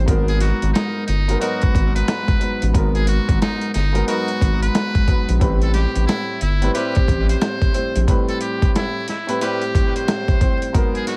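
Tough yet reflective, this boom-bap hip-hop excerpt moves at 90 BPM in 4/4 with a swung sixteenth-note feel, its harmony shifting from G#m9 to Am9. A gritty, compressed sampler-style drum kit sits up front, with a thumpy kick, a medium-tuned snare and hi-hat, all pushed through overdrive. Beneath it, a round analog bass with a deep, sustained tone anchors the low end until it drops out at 8.1 seconds. A dark baby grand piano with long sustain carries the accompaniment through a cassette-tape colour, while a muted trumpet with a buzzy metal mute plays a forceful, jazz-style solo line with scooped notes, light vibrato and delay, sounding distant and roomy. A clear, smooth-topped horn section adds punchy background stabs from 1.4 to 9.6 seconds, and the whole piece sits in a small room ambience with a layer of vinyl crackle.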